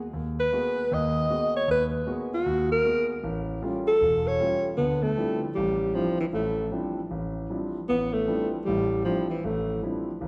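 A deep-bassed concert grand piano opens this intense, searching swung jazz fragment at 155 BPM, joined at 0.4 s by an up-front, mellow alto saxophone soloing with vibrato, subtone, soft attacks and scooped notes over chords moving from Abm9 to A7b13, before settling into D dorian at 4.8 s, all bathed in the long, wet reverb of a church or concert hall.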